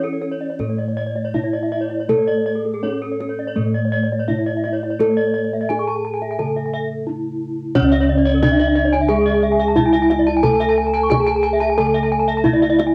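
This is Balinese gamelan with a brilliant, hypnotic mood, cut from a longer piece and set in a steady, straight four-beat pulse. A bronze metallophone played with wooden mallets carries the melody, its paired tuning producing shimmering beats in a close, dry and full sound with a cassette tape tint. Beneath it, a second metallophone, also struck with wooden mallets, holds a lower accompaniment while bossed gongs played with padded beaters supply a round, mellow bass that sits up front. Two higher metallophones struck with horn mallets spin arpeggios: one bright and airy, the other vintage and band-limited, both shimmering from paired tuning. A kendang adds tight, close percussion played with soft hands, and after a break from 6.7 to 7.8 seconds the music moves into a new section. The home cassette recording places everything in a small booth with a short, wet ambience.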